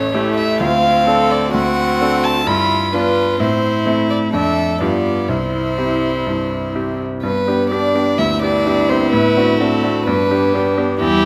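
A quick, cheerful and graceful classical-period movement for piano quartet at 128 BPM in 4/4, cut from a longer piece, opens with all four parts together in C major. Up front, a violin carries the pure, floating melody with soft-attack sul tasto bowing over a bright, brilliant concert grand with deep bass. A second violin adds an inner line, and an intimate, airy-bowed cello with light vibrato adds another from the background. At 7.2 s the music moves into G major, and the close, detailed sound sits in a moderate recital-hall reverb.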